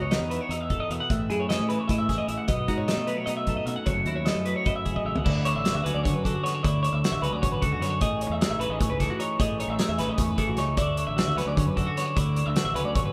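Recorded with light reverb as a band playing live in one room, this short cut from a longer math rock and midwest emo piece moves in a straight 7/8 at 304 BPM in eighths, its mood intricate and wistful. Two clean, picked twelve-string electric guitars play throughout: one, warm and compressed, picks out the accompaniment, while the other, twangy, up front and bright, spins arpeggios through spring reverb. Underneath, a growling fingered electric bass with overdrive and an up-front acoustic drum kit with a punchy kick and dark cymbals carry the chords from E5, Amaj7 and B9 through Dmaj9 and Amaj9#11, a drum fill at 5.0 seconds ushering in the second section at 5.3 seconds.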